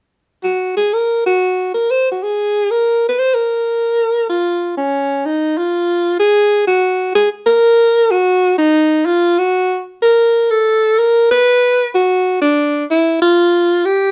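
A lone alto saxophone opens this short jazz excerpt at 0.4 seconds, playing by itself in a swinging, cool mood over a 4/4 with a lilting swing feel. Its tone is clear and present, carrying a soft subtone and gentle vibrato, and it sits up front in a jazz style. The line stays within a compact middle range, giving the solo an intimate character. After a brief opening phrase, the playing moves into a longer second passage from 4.7 seconds that carries it through to 14.1 seconds. A moderate studio reverb adds a touch of space, and the overall production leans dark and warm, framing the horn in a cool atmosphere.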